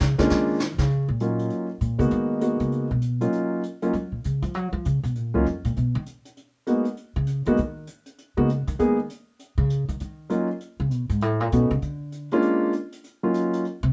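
A close, intimate sound with light reverb frames this excerpt of an up-tempo jazz piano trio in Eb minor, swinging at 198 BPM in 4/4 with a late-night, smoky mood and tuned slightly under standard pitch, to A4 = 437 Hz. The pizzicato upright bass takes a solo across the whole passage, from 0.0 to 13.9 seconds, its woody, growly steel-string tone sitting up front. The concert grand piano carries the melody from 0.2 seconds, smooth and vintage in character with deep low end and audible action noise. The brushed vintage drum kit, recorded in a small room with a rolled-off top, keeps time on brushed snare and hi-hat at a lower level behind the other two. The harmony moves from Bb7#9 to Ebm7 and Abm7, passes through a chordless stretch at 5.8 seconds, then returns through Eb7 and B7 voicings to resolve on Ebm7.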